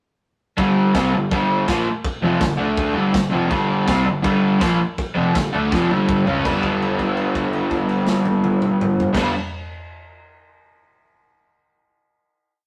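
Swaggering and raw, this short garage rock piece drives a brisk straight beat behind an up-front, overdriven, double-tracked guitar power-chord riff, doubled by a very quiet, dark fuzz bass in quarters and a gritty, saturated drum kit with a punchy kick, dark cymbals and a pumping small-room stomp, all in a rough rehearsal-room sound with tube saturation, until a drum fill at 5.7 seconds leads to a held final G chord at 6.4 seconds.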